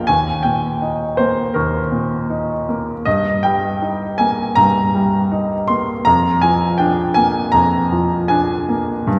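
The rhythm moves in an unhurried 4/4 with a flexible rubato, the pulse stretching and yielding as a romantic character piece for solo piano should. A clear, natural baby grand sits up front and carries the whole excerpt alone, spanning from Bb1 in the bass up to C6. Its short sustain keeps each note distinct even as a wet concert hall reverb, trailing for 2.3 seconds, blooms around it. The harmony settles on Eb, moves to Eb/G at 3.1 seconds, and reaches Bb7/F at 6.0 seconds, leaving the phrase poised. The mood is hopeful and lyrical, and the passage, cut from a longer piece, ends at 9.2 seconds.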